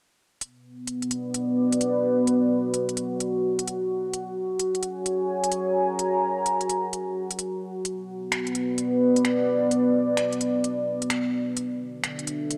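A short, wistful future garage passage at 129 BPM in 4/4 opens at 0.4 s with an organic electronic drum kit of finger snaps and smooth hi-hats, swung at 64% on the sixteenths and roughened by overdrive and vintage 12-bit sampler grit. At 0.8 s a dark analog pad enters with slow-attack sustained chords, its detuned sawtooth and triangle tones thickened by a sub octave and a chorus effect, giving a deep, moody weight from B3 up to A#5. Both parts sit up front, with the drums a little quieter than the pad. The harmony moves from Bm to F#add9, back to Bm and then to Bm7, tuned to A4 = 443 Hz. A lush hall reverb with a 2.0-second tail soaks the mix in a dreamy, melancholic haze until the passage is cut off at 12.6 s.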